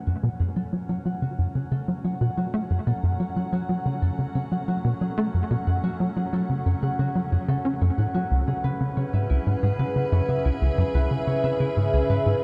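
Drenched in a huge reverb that places everything in a vast, echoing space, this excerpt of expansive, cosmic sequencer-driven space music centers on a tight, punchy sequencer bass riff, detuned, dark and up front with ensemble chorus and delay. Around it, a bright, morphing wavetable pad holds sustained chords with chorus and its own reverb, and a mellow, ringing concert harp plays delayed arpeggios, both fading in across the whole passage. The harmony rests on F#madd9 before shifting to C#m7 at 8.3 seconds.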